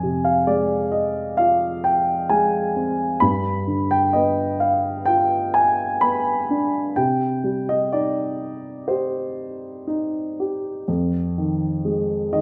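A dark, mellow grand piano plays alone and up front in this melancholic, wistful classical fragment, unfolding lyrically with rubato at around 59-66 BPM in 4/4 in C harmonic minor, moving from Fm through G7 to Cm at 7.0 seconds before shifting to Fm7 at 10.9 seconds, with the piano set in a moderate scoring-stage reverb.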